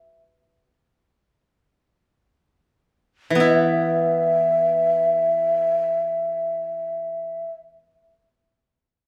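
Japanese traditional chamber music in free time, calm and austere, in which a bright, woody koto plucked with fingerpicks opens alone and slows over the first 3.4 seconds before a breathy, hollow shakuhachi enters at 3.4 seconds to hold a straight-toned high E above it, both up front in a moderate recital-hall reverb, tuned to A4 = 441 Hz, in a short fragment cut from a longer piece.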